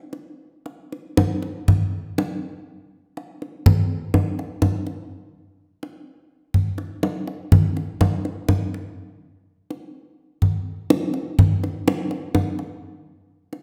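This gamelan passage, cut from a longer piece, moves at a slow, straight 62 BPM in 4/4 with a ceremonial, shimmering mood, as a deep, acoustic kendang sits close, dry and up front from 0.1 s to the close at 13.6 s, against the reverberant air of a recital hall and a new section arriving at 3.6 s.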